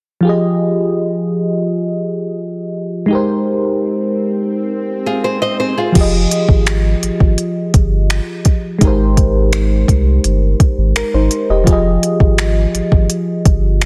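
Longing and sensual, this contemporary R&B piece moves at a relaxed 84 BPM in 4/4 with a straight feel, in F minor. A mellow FM electric piano carries the accompaniment throughout, its round, warbling, vintage tone touched with chorus and a faint noise layer as it moves between Fm7 and Abmaj7. An electronic swell enters at 4.0 seconds, and at 5.1 seconds a small, fingerpicked nylon-string guitar adds brief arpeggios trailed by tape echo. At 6.0 seconds the groove arrives: a deep, round sine sub bass and a produced electronic drum kit with a soft kick, crisp hi-hat, finger snaps and crash cymbal, its overdrive giving the beat some grit. Light reverb surrounds a dense, heavily limited modern mix that keeps every part up front in this excerpt from a longer piece.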